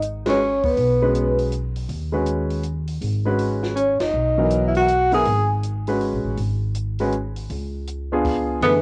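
A lo-fi home cassette recording with light reverb and studio ambience captures a short cut of intense, hypnotic modal jazz in G# minor, swinging in 3/4 at 161 BPM, where a woody, growly pizzicato upright bass and a tight cocktail drum kit with dark cymbals and a punchy kick run throughout, a worn baby grand piano comps up front, and a ringing vibraphone with slow motor vibrato carries the melody in brief phrases above a clear, scooped alto saxophone second line, with band accents at 0.2 and 3.9 seconds over a G#m11 chord that moves to C#7b9 at 7.5 seconds.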